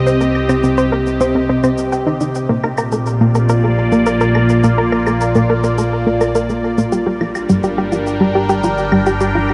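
Ambient, sequencer-driven space music at 105 BPM in a straight 4/4, this cosmic, expansive fragment is cut from a longer piece and moves through Cm, Bb and Gm. A phased analog pad sits up front with bright, swirling sustained chords built from detuned sawtooth waves, its slow attack and long release treated with phaser and chorus. Beneath it, an analog drone holds the bass with an evolving, ring-modulated tone mixing pulse-width-modulated and triangle waves, also carried by chorus. An analog pluck plays a round, fast-attack riff with a short decay and sub octave, treated with chorus and echoed by delay, while a filter sweep runs across the synth arpeggio sound throughout. Cabasa and claves add faint, electronic-sounding percussion with delay, re-recorded in a small room, and the whole piece floats in a huge ambient reverb of 7.9 seconds with a cassette tape character.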